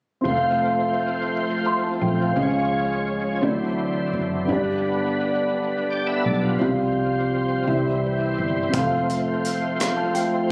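Moving in a slow 6/8 at 57 beats per minute, counted in dotted quarters, this jubilant, soulful gospel passage in F major is cut from a longer piece. A dark, mellow baby grand piano carries the accompaniment, while an overdriven tonewheel organ, thick and gritty through a slow rotary speaker and chorus vibrato, holds sustained chords up front. Beneath them a foam-muted fingered electric bass gives a punchy, direct low end, and a very quiet French horn section adds classical-style sustained chords. The harmony moves from F through Db, D9, G and Csus4 to C before returning to F at 8.7 seconds, where a saturated acoustic fusion kit enters with hi-hat, kick drum and rim click until 10.3 seconds. The sound carries light reverb and studio ambience, captured on a phone in the room with club reverb and compression.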